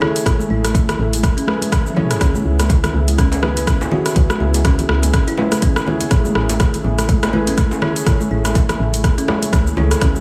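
A spiritual, hypnotic afro house excerpt at 123 BPM opens on a smooth, detuned sawtooth pad with chorus, background kalimba arpeggios through tape echo and a low-pass filter, soft felt-muted piano stabs with audible action noise, a deep house kit with metallic, overdriven hats, rim click, shaker and toms, and ringing high-tuned congas, before a round, woody FM bass and an up-front overdriven electronic kick join at 0.3 s. A drum fill at 1.8 s precedes a very quiet, saturated djembe at 2.4 s, and the pumping sidechained parts move over Amaj7 and C#m7 in a small, lightly reverberant room.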